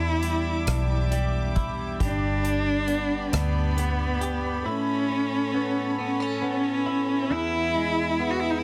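Tender and romantic, this six-eight pop ballad moves at a slow 45 BPM in 6/8 with a straight feel, and it is cut from a longer piece. A bowed solo cello carries the melody up front, its focused tone marked by vibrato and a smooth top, while a double-tracked clean electric guitar, recorded direct, picked and compressed, supplies the accompaniment. Behind them, a studio string section holds soft-attack sustained chords played sul tasto, sounding pure, floating and distant. A vintage foam-muted fingered electric bass gives a dark, round, punchy and amped low end up front, and an acoustic drum kit in a small, airy room adds hi-hat, rim click and a punchy kick played with bundle sticks; the drums stop at 4.4 seconds and the bass at 4.6 seconds. The harmony moves from Em7 through G and Aadd9 to an E chord at 7.3 seconds, all set in studio reverb with a dense, heavily limited modern master.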